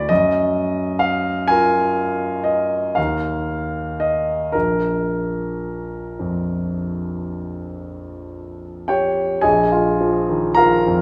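A concert grand sits up front in a moderate recital hall, its deep bass and long sustain blooming into the room's gentle reverb with an open, warm glow. This is impressionist classical music for solo piano, nocturnal and mysterious in mood, moving in a slow 9/8 with a flexible, rubato feel. The piano spans from Bb1 up to B5, opening at 0.1 seconds on a lush Gbmaj9 harmony that lingers in the air. The harmony then passes through Eb5 and Bb5 before a new section arrives at 9.4 seconds on a hollow Bb7 sonority stripped of its third. Cut from a longer piece, the recording ends at 11.0 seconds, leaving the music suspended in its dreamlike haze.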